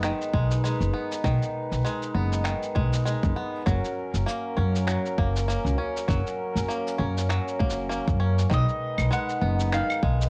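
A lightly swung 99 BPM groove in 4/4, built from muffled, pitched-down electronic finger snaps, shaker and claves and a tight electronic kick drum from 0.3 s, drives this playful, pastoral folktronica piece in F# major: a woody, thumpy pizzicato upright bass sits up front, a bright, twangy banjo played with fingerpicks spins arpeggios through analog delay, a reedy, breathing pedal harmonium holds chords moving between B6 and F#, and a picked, double-strung bowl-back mandolin enters with a short melody at 8.5 s, all captured as a home cassette recording with light reverb.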